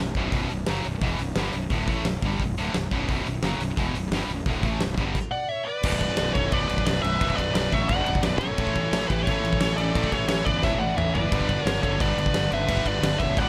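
A big acoustic rock kit sits up front in this heavy, dark metal excerpt at 175 BPM in B minor, its fat snare, punchy kick and rolled-off top driving two bright, high-gain rhythm guitars riffing in the background alongside a growly, fuzz-overdriven fingered bass. During a stop from 5.2 seconds, two distorted lead guitars enter at 5.3 seconds, one carrying the up-front melody and the other a quieter second line, as the chords move from B minor through A to G, with a drum fill near 10.6 seconds. The mix is dry.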